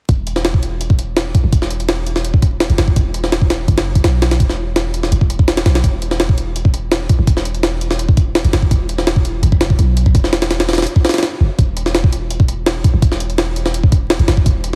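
Heavily compressed and dry, with a squeezed radio sound and a layer of vinyl crackle, this frenetic, nostalgic drum and bass and jungle passage, cut from a longer piece, pairs a gritty, pitched-up sampler-style drum kit of thumpy kick, high-tuned snare and hi-hat, placed up front and re-recorded in a large room, with a deep, boomy 808-style sine bass whose noise layer, fast attack and dark, decaying tone run beneath it throughout the straight 4/4 groove.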